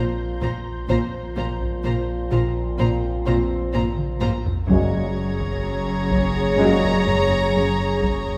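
A cinematic suspense score cue, mysterious and uneasy, moving at a slow, straight pulse and cut from a longer piece. Bowed strings played sul tasto carry it: a rich violin section holds a high melody, a second violin section traces a line beneath it, a dark viola section supplies accompaniment, and a very quiet, floating cello section plays a riff. Underneath, a dark double bass section and a rich cello section hold the bass in the background, joined by a deep, punchy sine sub bass drone with a pitch-drop attack. Mellow French horns and a bright, tight trombone section sustain chords until 7.0 s, while a very quiet, brilliant grand piano and a pure, smooth-topped high violin section add texture. A taiko ensemble struck with hard sticks enters at 0.4 s from the background and plays a fill from 3.7 to 4.7 s, ending just as the harmony shifts from Bbsus2 to Gbadd9. The whole cue sits in a wet scoring-stage reverb, heard from further back in the room.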